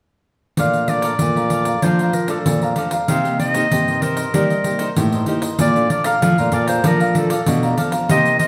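A straight 4/4 pandeiro groove, jingly, close and dry up front, drives this festive, sunny blend of samba and choro from 0.6 seconds. Over it a clear clarinet sings the solo melody in a classical style, up front yet roomy with a distant sheen. A picked cavaquinho adds crisp, mellow accompaniment, while one full-bodied, fingerpicked nylon-string guitar fills in with a deep classical tone and audible finger squeak. A second, warm nylon-string guitar, fingerpicked in a classical manner, carries the bass from the background. The harmony moves from Bbmaj7 to Cm7 at 3.1 seconds, and a new section returns to Bbmaj7 at 5.6 seconds. A large studio reverb gives this short cut from a longer piece a wet, spacious finish.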